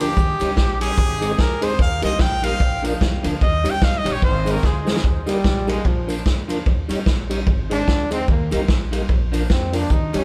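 A clear, punchy trumpet with vibrato takes the lead in this upbeat, bouncy ska excerpt, its solo carried by an analog delay until a drum fill at 4.6 seconds hands the melody to a bright, smooth-topped trombone from 5.3 seconds. Underneath, a vintage drum kit sits up front with a punchy kick and rolled-off top, joined by a woody, thumpy pizzicato upright bass, a slightly broken-up electric guitar in the background, flute-like tonewheel organ stabs with key click and slow rotary speaker, and a very quiet, jingly tambourine. The band plays live in a moderate stone room, cycling through Eb7, Ab, Eb and Bb with a swung feel.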